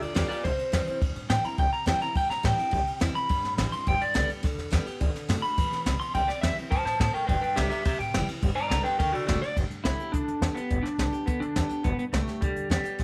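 Rockabilly with a rollicking, rowdy energy, this excerpt runs at a brisk straight pace from a longer piece. An electric guitar through a small old amp carries the melody up front, its twangy, slightly broken-up tone bathed in tape echo, and it takes a clean solo from the start until 9.6 seconds, when the music moves into a new section. Beneath it, a picked steel-string acoustic guitar adds bright, full-bodied dreadnought picking as accompaniment, sitting lower in the mix. An upright bass, played pizzicato on gut strings, gives a woody, thumpy foundation. A jazz drum kit played with brushes sits up front with an airy, polished studio sound, pairing dark cymbals with a high-tuned snare and a punchy kick, while studio reverb wraps the whole band in a shared room.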